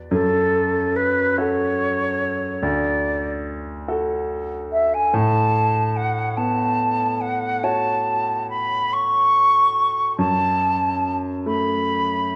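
Worn, warbling cassette tape with drifting pitch and a wet recital-hall reverb colours this hazy, wistful impressionist classical duo in F# minor, where an airy, expressive concert flute with vibrato carries a tongued melody from 0.1 seconds over a smooth, vintage grand piano accompaniment in a slow, rubato 12/8 at 48 BPM, moving through F#m, D and A69 before returning to F#m at 10.2 seconds.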